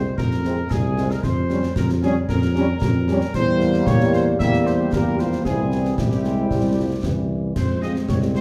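A mellow tuba sits up front with a light vibrato beneath a distant trumpet section carrying the melody from the opening moment of this resolute, stern military-style march for wind band, cut from a longer piece at 114 BPM in 2/4. Concert snare, bass drum and clash cymbals with bright cymbals join at 0.2 seconds, and by 0.4 seconds a French horn section and a dark, tight trombone section fill in chords in the background, moving through Fm, C7/E and C before returning to Fm. The brass sounds roomy and classical, set in a recital hall with a 1.6-second reverb.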